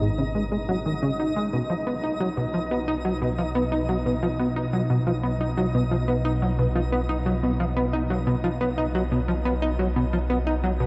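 Drenched in a huge, dark reverb with a long tail, this short, mysterious and hypnotic piece of sequencer-driven space music moves from a G#5 chord to B at 1.5 seconds. A punchy, funky analog bass riff with a fast filter pluck sits up front, thickened by lush chorus and tape echo, while a detuned, warbling sawtooth drone with slow attack and chorus hums low beneath it. Above them, a faint granular FM texture twinkles with octave-up shimmer in its own built-in reverb, all three parts sounding together throughout.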